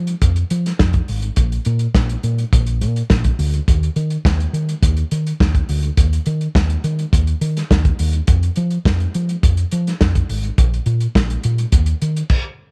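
Dry and up front, this short disco excerpt at 104 BPM in a straight 4/4 carries a celebratory, glamorous mood. A small-room acoustic soul kit sounds lo-fi and muffled, with a tight kick, a medium-tuned snare, hi-hat and crash, dark cymbals and a rolled-off top. A round, punchy hollow-body short-scale electric bass, fingered and amped, runs from 0.0 to 12.2 seconds, ranging from Ab1 to F3.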